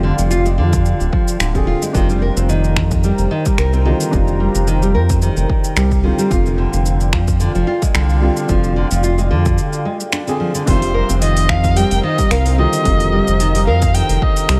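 Recorded in a small room, this hypnotic, mystical organic downtempo excerpt sways with a light swing as a round analog bass sits up front beneath a felt-muted upright piano with audible action noise, a warbling lo-fi pad (both pumping with the sidechain), fingerpicked nylon-string guitar arpeggios trailed by delay, and an overdriven electronic kick alongside a deep house kit of finger snaps, metallic hi-hats and shaker, until a brief break at 9.6 seconds gives way at 10.7 seconds to a smooth, bowed kamancheh melody with vibrato, portamento and gritty 12-bit sampler texture, joined by a very quiet, ringing bronze singing bowl.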